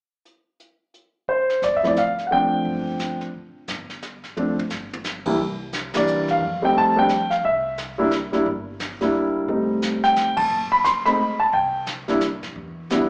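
Sophisticated and warm, this brief jazz piano trio excerpt swings along at 176 BPM in 3/4, centered on C mixolydian. A brushed drum kit opens alone at 0.3 seconds, airy and polished in a small room, with dark cymbals, a medium-tuned snare and a boomy kick, and it plays a fill from 4.4 to 5.0 seconds. The baby grand piano carries the melody from 1.3 seconds, natural and up front across a span from C2 to C6, moving over suspended G chords before settling into C9 and F9 harmony. The pizzicato upright bass joins at 1.6 seconds with a woody, dark tone from its steel strings, sitting low in the mix. The band hits accents at 5.9 and 10.3 seconds as the changes pass through F#dim toward Em7, all heard as a live club gig through the venue's PA, with club reverb and a small-speaker quality.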